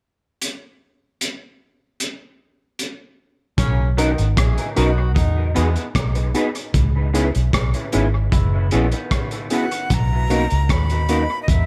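Lovers rock reggae at 76 BPM in B major, romantic and smooth, opening with a crunchy, saturated breakbeat kit of hi-hat, tight kick and rim click, dub echo trailing it, before a round, foam-muted fingered bass enters at 3.6 seconds alongside a brief horn section line with vibrato and octave doubling. A worn, slightly out-of-tune tine electric piano and lo-fi, slightly broken-up guitar stabs carrying ensemble chorus and dub echo move through Bmaj7, Emaj7, C#m7 and F#7sus4, while a second, fingered guitar adds soft arpeggios bathed in spring reverb. At 9.5 seconds a breathy, reedy jazz flute with chiff and tape echo takes the melody as the harmony returns to Bmaj7, in this excerpt from a longer piece.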